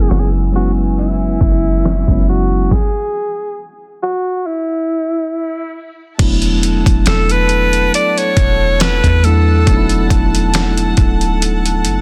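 A bright, vibrato-laden alto saxophone with digital delay opens this dreamy, tender contemporary R&B piece at a slow 69 BPM in E mixolydian with a light sixteenth-note swing, joined at once by a mellow tine electric piano, a floating sul tasto string section and a deep, round 808-style bass, with a gritty sampler-style drum kit with a thumpy kick entering a moment later, while a filter sweep runs until 6.2 seconds, a stop falls from 2.7 seconds, the harmony shifts from F#9sus4 to E9sus4, the saxophone drops out at 10.1 seconds, and the dry, dense, heavily limited mix keeps the drums, bass and saxophone up front.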